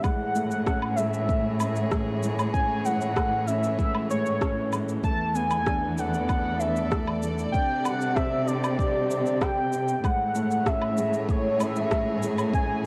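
Piano and strings electronica with a luminous, hopeful mood, this brief straight-feel passage in 4/4 moves from Amaj7 through E7sus4 and Csus2 back to Amaj7. A velvety synth lead carries the melody up front, its wave-folded sawtooth and triangle unison thickened with chorus and vibrato, while a felt-muted upright piano plays a dark, intimate riff and a chamber string section holds soft sul tasto chords beneath. Bowed cellos with portamento supply an expressive bass line treated with tube saturation and sidechain pumping, a deep electronic kick sits up front alongside a layered shaker, woodblock and rim click in small room ambience, and cassette tape grain colours the lead, piano, strings and drums.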